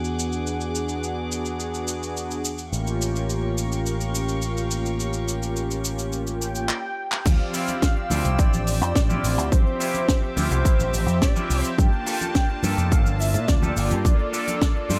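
Sensual and cosmic, this nu-disco excerpt at 106 BPM in D minor rides an up-front picked bass with a bright envelope filter, a tight funk kit with a high-tuned snare, and a smooth detuned analog pad with chorus, tremolo and slapback echo over a distant, reedy string section that drops out at 11.8 seconds. A thick detuned unison lead with analog delay enters at 6.4 seconds, and a drum fill leads into the drop at 7.3 seconds, where a punchy, tape-warm electronic kick, background cabasa and congas, and a twangy clean guitar riff with lush chorus join over Dm11 and Gm9 chords.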